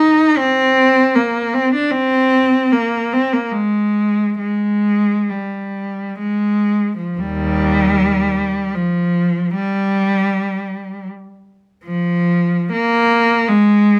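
Classical music for unaccompanied cello, this short passage taken from a longer piece carries a nostalgic, lyrical mood. A single bowed cello plays alone throughout the 14.0 seconds, moving freely in 3/4 with an expressive rubato feel and a tempo that drifts between 51 and 85 BPM. Its tone is rich and smooth, with vibrato, an even sound, and a silky top, ranging from Eb2 up to Eb4. The instrument sits up front, surrounded by a moderate large-studio reverb that lends a sense of space. The music falls into two sections, with the second beginning at 7.2 seconds.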